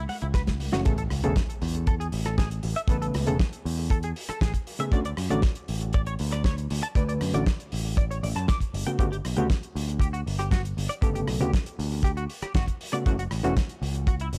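A twangy, compressed clean electric guitar riff and an up-front picked electric bass open this sunny, feel-good nu-disco excerpt at 118 BPM in A major, with a brief touch of bright, thin-skinned congas and a short drum fill leading into the drop at 0.9 s. There, a very quiet electronic impact marks the arrival, while a dry, tight kick sits prominently under a damped 70s kit of hi-hat, rim click and a fat snare with a rolled-off top. The bass pumps with sidechain compression, and a reedy, overdriven electric piano, gritty through a combo amp with fast tremolo and tape echo, pumps along in the accompaniment until 13.5 s. The bright guitar carries analog chorus and tape echo over harmony that moves from Amaj9 through Dmaj7 and Gmaj9#11 to F#m7. A small room ambience and a dry, gritty hardware sound give the groove a close, vintage character.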